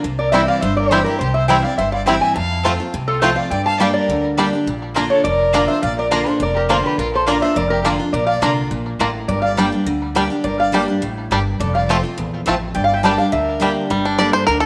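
This excerpt of rustic, driving bluegrass opens with a bright, full-bodied picked dreadnought guitar up front and a thumpy, woody upright bass on gut strings, moving at a brisk 208 BPM in straight 4/4. Almost at once a nasal, metallic lap resonator guitar played with slide and fingerpicks carries the melody alongside a twangy, percussive banjo that is touched by tape echo. A smooth bowed fiddle with light vibrato adds a second line, while a picked mandolin with double strings punctuates the texture with stabs from the background. The harmony moves from C through F and Gm into a longer stretch beginning on Bb at 4.7 seconds, returning through Gm and F before settling on Gmadd9 at 13.9 seconds. A moderate echo chamber reverb gives the ensemble a studio sheen, and the top end stops at 11 kHz.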